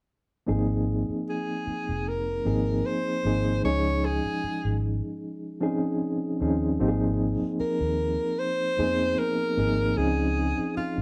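A light reverb surrounds this short soul excerpt, captured like a band playing live in one room, with a lush, romantic mood at a relaxed 76 BPM in Ab major with a gentle sixteenth-note swing. A mellow, reedy electric piano with fast tremolo sits up front alongside a dark, round, foam-muted electric bass from 0.5 seconds, moving between Ab69 and Dbmaj9 chords. At 1.3 seconds a warm alto saxophone enters up front with a jazz-style solo melody and vibrato.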